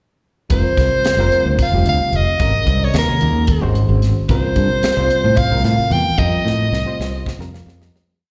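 Heard as a live gig through the venue's PA with a light recital-hall reverb, this short, complete piece of electric jazz fusion feels bright and slick at 222 BPM in a straight 7/8. A breathy soprano saxophone with vibrato and slapback echo carries a motif-based solo melody up front over barky, overdriven reed electric piano stabs in quartal voicings, themselves coloured by fast tremolo and slapback echo, while a direct fingered electric bass plays a syncopated riff and a dry funk kit with a high-tuned snare and tight kick drives the groove. Suspended chords move from Fsus24 to F9sus4, and from 6.2 seconds the music fades out, with a drum fill entering at 6.5 seconds and an electric piano fill arriving at 7.3 seconds.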